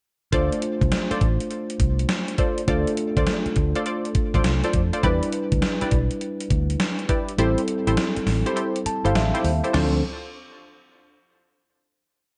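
A hard-swung 4/4 drum-machine beat at 102 BPM drives this confident, slick new jack swing piece in D dorian, with a thumpy kick, a gated-reverb snare, hi-hat, toms and crash, all tape-warm and re-recorded in a small room, sitting up front. Underneath, a dark, foam-muted fingered electric bass plays a round, bouncy swung synth-funk line full of muted ghost notes and chromatic approach notes. A mellow, clean tine electric piano holds drop-2 chords over the changes from Dm7 to Em7 to Am7, while a sawtooth and square-wave polysynth adds short, syncopated filter-pluck stabs with chorus and digital delay. The kick drops out at 7.4 seconds, and the electric piano slips in a short fill at 8.6 seconds before the piece settles on a final Dm7 at 9.7 seconds. A digital ambience wraps the mix, and the top end is soft and rolled off.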